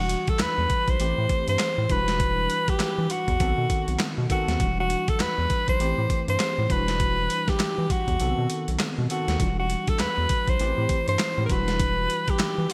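A punchy alto saxophone with scooped notes and vibrato leads from the first moment over bell-like tine electric piano with ensemble chorus and a round, deep analog bass, joined at 0.1 seconds by a gritty, compressed sampler-style drum kit of thumpy kick, snare, hi-hat and handclaps under gated reverb. This slick, bouncy new jack swing cut rides a swung groove through a looping progression of Em9, Am7 and B7b9 chords, with the forceful, jazz-style saxophone line carrying a touch of delay. The kick drops out from 8.2 to 9.4 seconds, and the whole has a light reverb and a glossy 1980s-style digital sheen.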